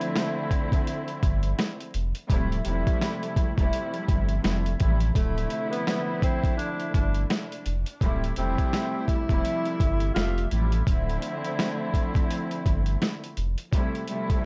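Swung 16ths at 84 BPM drive this dark, reflective boom-bap hip-hop clip, where gritty, pitched-down sampler drums with a thumpy kick and high-tuned snare sit up front beside a thick, saturated sub bass entering at 1.2 seconds, veiled con sordino strings filtered through cassette tape play over a Fmaj9/D chord that shifts to Fmaj9 near the end, and a breathy, distant tenor saxophone with subtone, scooped notes and digital delay sings a whispered jazz line from 5.2 to 10.5 seconds, all set in a small room with vinyl crackle.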